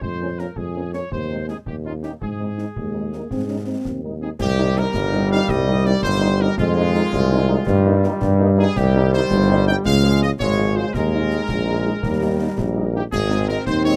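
A festive, proud military-style march for wind band in 6/8 and Ab major at 110 BPM opens with a tight, present trumpet section carrying the melody over a clear tuba up front, while concert bass drum, snare and dark-toned clash cymbals sit dry in the background and a loose, distant French horn section adds shadowy accompaniment. A soft-attacked euphonium briefly sings a second line from 2.8 seconds, and at 4.4 seconds a brilliant trombone section enters with sustained chords as the harmony shifts toward C minor and F minor. The close, detailed sound has little reverb, and this fragment of a longer piece moves through Eb before settling on Ab at 13.1 seconds.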